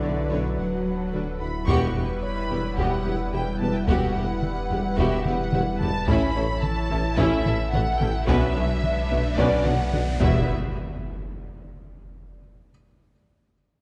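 Brooding and tense, this cut from a hybrid orchestral and electronic film score moves at 109 BPM in E dorian, with a lush, focused violin section carrying the melody over a softer studio violin line, expressive violas with portamento, a shimmering chorused pulse-width pad, distant, punchy French horns, a mellow tuba, a deep sub bass, very quiet cellos, woody double basses and a felt-muted upright piano adding intimate texture, while close, dry taiko drums enter at 1.7 seconds and an electronic riser starts at 8.7 seconds and leads into an impact at 10.5 seconds, framed by dark production and moderate scoring-stage reverb.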